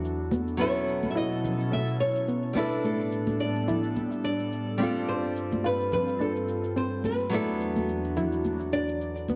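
Sunset chillout with a blissful, sunny glow, where an up-front fingerpicked nylon-string guitar with delay and an airy, breathy pad with chorus carry suspended chords from the first moment alongside an overdriven electronic shaker, a dark, round pluck with a filter sweep and bright hand-struck congas sit in the background from 0.3 seconds, and a warm fingerpicked flamenco guitar with delay takes the melody from 0.6 seconds, all in a moderate reverb with small-room ambience in this brief excerpt.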